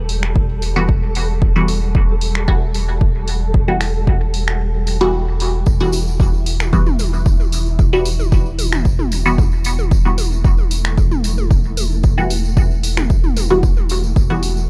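Deep and meditative, this 113 BPM dub techno excerpt in E minor rests on a punchy electronic kick, a round soft sub bass and a muted, phaser-treated chord stab with dub echo, the latter two pumping under sidechain, while a grainy, flickering texture with built-in reverb, snaps and hi-hat from an analog drum machine, and later a jingly tambourine from 5.7 seconds and overdriven electronic toms from 5.8 seconds fill out a dry, gritty cassette-tape sound, with the kick dropping out from 4.6 to 5.7 seconds.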